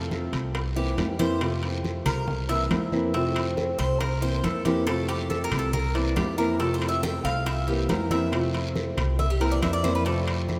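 A dark, boxy fingerpicked archtop guitar with audible finger squeak opens with a bright, metallic Cuban tres, whose double strings carry soloing arpeggios, and a thumpy, gut-strung upright bass played pizzicato up front, in a danceable, warm stretch of Cuban son and guajira cut from a longer piece. Soft-handed congas and tight, high-tuned bongos sit very quiet alongside a raspy, saturated guiro, ringing metal-shell timbales in the background and very quiet claves, as the harmony moves between F and C7 with touches of Fmaj7. The rough home demo mix is bathed in a lush hall reverb.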